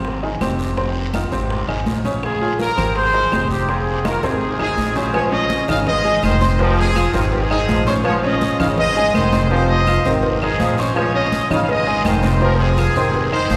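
A bright trumpet section with vibrato carries the melody from 4.6 s in this sunny, joyful salsa fragment, after a mellow, punchy horn section states the opening line from 2.2 s, and a roomy, distant trombone section adds a second line from 5.1 s. Underneath, a worn, slightly detuned upright piano with audible action noise accompanies over Fm7, Ab and Bbm7 changes, while a dark, thumpy gut-string upright bass sits up front. Close, high-tuned congas, a raspy guiro, faint woody claves and distant bongos with cowbell fill out the percussion, a drum fill leads into the second section, and the whole band rings in a long church reverb.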